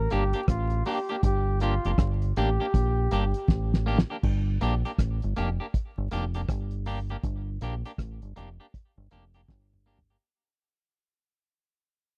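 A swung, laid-back roots reggae groove rides on a cloth-damped, thuddy drum kit with a fat snare and dark cymbals and on a deep, round dub bass played up front, while a bright, twangy clean electric guitar with tape echo accompanies and a distant, roomy flugelhorn with light vibrato and tape echo carries a hypnotic melody until 3.8 seconds, all in a dry, close 1970s-style studio sound with vinyl crackle, drum fills closing each half and a fade-out from 4.2 seconds.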